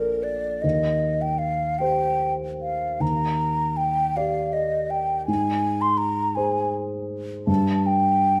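Classical impressionist duo for flute and grand piano, dreamy and luminous, moving in a slow, rubato 6/8 at around 48-55 BPM counted in dotted quarters, tuned slightly below standard pitch at A4 = 437 Hz. An airy, hollow concert flute sings the up-front melody with soft attacks and gentle vibrato, while a dark baby grand piano supports it with long-sustaining accompaniment through Bbmaj7, Eb6, Ebmaj7 and Ab before settling on Gsus2 at 7.5 seconds. Both parts play throughout this 8.4-second fragment of a longer piece, set in a stone room whose wet reverb lends the sound a soft glow.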